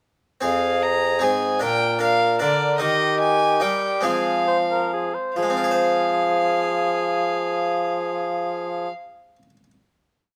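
In a straight triple metre, this short renaissance-style consort dance moves with a rustic yet courtly air, broadening as it slows between 2.2 and 5.4 seconds before settling onto a held final chord. A rich, gut-string violin carries the period-style melody up front with light vibrato. A smooth-topped, mellow cor anglais adds a second line of sustained chords and phrase-end answers, while a warm bassoon holds a sustained bass with passing notes. A bright, single-strung harpsichord plucks rolled chords and rings on alone until 9.7 seconds, all set in a moderate stone-room reverb.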